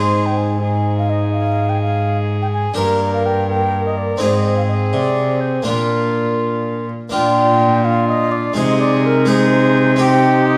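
Festive and courtly, this short cut from a longer Renaissance-style consort dance moves at 83 BPM in a straight 6/8, with an airy baroque flute carrying the melody with vibrato and a crisp attack. A nasal, reedy viola sings a distant second line while a dry, close-miked Flemish-style harpsichord and a warm trombone set back in the room fill out the accompaniment, all over a gut-string cello bass sitting up front. A dark, warm production and moderate recital hall reverb surround the ensemble, with the music turning to a new section at 7.1 seconds.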